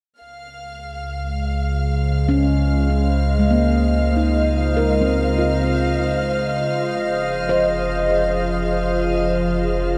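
Ambient music in free time and Db major, this serene, luminous passage cut from a longer piece floats in a wet cathedral reverb with a long 5.2-second tail. A round sine sub bass sets a deep floor at 0.2 seconds, joined at once by an intimate chamber violin section whose bowed, lightly vibrato-touched high texture glistens under shimmer reverb. A warbly, tape-like pad sits up front from 1.1 seconds, its detuned, nostalgic lo-fi chords thickened by chorus, phaser and shimmer, moving from Dbmaj7 to Fm7 at 6.7 seconds. A ringing nitrided-steel handpan adds soft, dark, meditative arpeggios from 2.3 seconds, trailed by delay and shimmer. At 3.9 seconds a very quiet, resonant drone with moving overtones slides in among the rest, deepening the glow.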